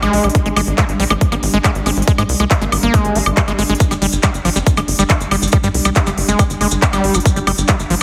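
A heavily compressed, radio-like sound in a lush digital hall frames this alien psychedelic trance cut, where a squelchy, distorted acid bass riff with a filter sweep and tape echo rides over a tight sawtooth sequencer bass, a punchy overdriven kick from 0.3 s and a crisp big-room kit of handclaps, hi-hat and woodblock, while a swarming, detuned drone pumps in the background, a very quiet nasal wobble bass enters at 1.1 s, a faint electronic swell passes, and grainy vintage maracas join at 3.8 s.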